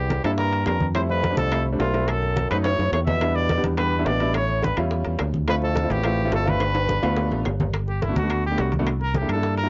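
A vibrato-laden, vintage-toned trumpet leads this lively, sunny Afro-Cuban jazz passage from the front of the mix, cut from a longer piece at a brisk 212 BPM in a straight 4/4. A warm, direct fingered electric bass sits up front alongside it, while a concert grand piano adds natural, short-sustained chords with deep low end over rich changes such as C9, A7b13 and Dm9. Far back in a roomy space, a mellow bassoon plays a second line with light vibrato and analog delay until 7.5 seconds. Tight, high-tuned bongos that sound compressed and saturated, ringing metal-shelled timbales and woody claves stay in the background, joined by very quiet, bright, low-tuned congas with a thin skin in a small room, with a drum fill at 6.6 seconds. At 7.7 seconds the harmony moves to Gmaj7 and the trumpet takes a solo, all heard through a dry, gritty cassette sound with a dull top end and light reverb.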